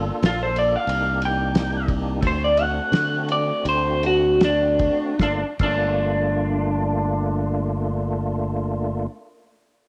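A percussive tonewheel organ with key click, slow rotary speaker and overdrive opens this mournful, soulful excerpt of straight-eighth soul blues in G minor, alongside a bright, punchy fingered electric bass, as the tempo slows from 93 toward 74 BPM over a Gm9, Cm9 and D7 progression. A cloth-damped, thuddy drum kit with dark cymbals, a fat snare and a tight kick joins at 0.2 seconds and drops out at 5.8 seconds, while an up-front, slightly broken-up guitar through a small old amp carries a lo-fi, compressed solo melody colored by phaser and slapback echo. At 5.2 seconds the harmony returns to Gm9 for a second section, all set in a small, lightly reverberant room.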